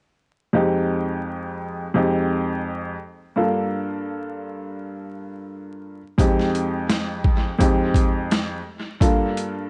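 A mellow, woody upright piano opens the excerpt at 0.5 s, its vintage tone shaded by cassette-tape coloring and filtering as it moves between Fm9 and Gm9 in F dorian. This is a moody boom-bap hip-hop groove at 85 BPM with a swung 16th feel. At 6.2 s a pitched-down, sampler-style drum kit arrives up front with a thumpy kick, a medium-tuned snare and hi-hat, sounding gritty and compressed through overdrive and dub echo, all set in an echo-heavy mix with light reverb and vinyl crackle.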